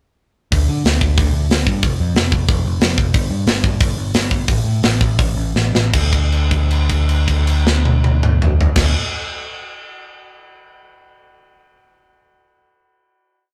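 A rough rehearsal-room recording with light reverb captures a short, angry and urgent punk rock piece, its overdriven, growly picked electric bass driving eighth notes up front beside a tight metal drum kit with a tight kick and a rolled-off top playing a fast punk groove on kick, snare, hi-hat, toms and crash. After 3.1 seconds the pace starts slowing, and a drum fill at 5.6 seconds leads into a final held note that rings until 8.8 seconds.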